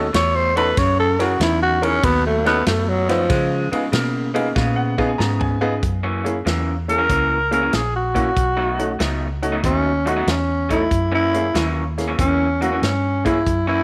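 Piano, slightly broken-up small-amp guitar riff and round, foam-muted bass open this soulful, rollicking electric blues shuffle in F# mixolydian at 94 BPM, joined by a natural country drum kit and an up-front, growling, raspy tenor saxophone whose solo runs to 5.8 s, with woody piano and drum fills closing that stretch over B7, F#7 and C#7 changes in light studio reverb.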